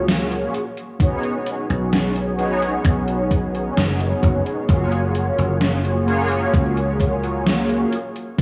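Dreamy and faded, this slow vaporwave fragment at 65 BPM in F# major drifts between F#maj9 and B69 as up-front, detuned synth brass with ensemble chorus and tape echo floats over a growly, foam-muted thumbed slap bass and a gated 80s digital drum machine whose hi-hat and gated-reverb snare carry 12-bit sampler grit, while an overdriven, thumpy electronic kick joins at 1.0 s, the whole mix sitting in a lush hall reverb with a cassette-tape haze.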